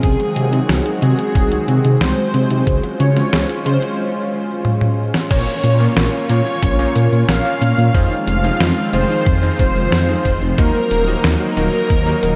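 Cinematic and moody, this synthwave excerpt in Bb minor moves at a straight 91 BPM in 4/4, with a smooth, full-bodied soft supersaw melody carrying tape echo over a lush unison pad that breathes with chorus, phaser and sidechain pumping; a tine-like thumb-piano-style synth pluck plays arpeggios in the background, a deep, rumbling detuned saw bass sits up front, and a thumpy electronic kick joins a detuned 8-bit drum machine's cabasa, crash, hi-hat, medium-tuned snare and toms in small room ambience, and then a break at 4.0 seconds with a drum fill leads at 5.3 seconds to a shimmering string-machine violin second line and cutting, clangy electric grand piano stabs, all set in a dreamy mix soaked in huge ambient reverb.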